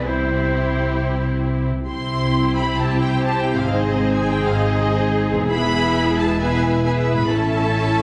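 A straight 4/4 pulse at 132 BPM drives this heroic, triumphant slice of adventure film score, where a lush violin section sings the expressive melody over a softer second violin line, rich distant violas, smooth bowed cellos and a close, up-front double bass section with portamento. A pure, distant flute adds a brief line until 1.4 s, mellow French horns enter in the background with sustained chords at 1.9 s, and a very quiet, ringing harp plucks arpeggios throughout. The harmony moves from C to Ab, E and A, all in a moderate scoring-stage reverb.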